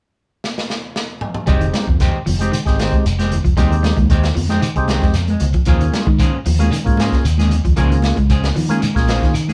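A crunchy, gritty breakbeat kit opens this hypnotic, defiant afrobeat excerpt with a fill at 0.4 seconds: hi-hat, tight kick, medium-tuned snare and toms sit up front with a saturated, rolled-off top. At 1.5 seconds the band falls in on an Fm9 groove at 114 BPM in straight 4/4. A punchy fingered electric bass drives the low end. A percussive tonewheel organ with key click and a slow rotary speaker fills out the accompaniment. Two slightly broken-up picked electric guitars join together: one plays arpeggios with a vibrato effect in the background, and the other adds twangy stabs. Grainy shekere and ringing congas played with soft hands sit further back, and the harmony shifts to Eb9sus4 at 5.7 seconds, all heard as a band playing live in one room with light reverb.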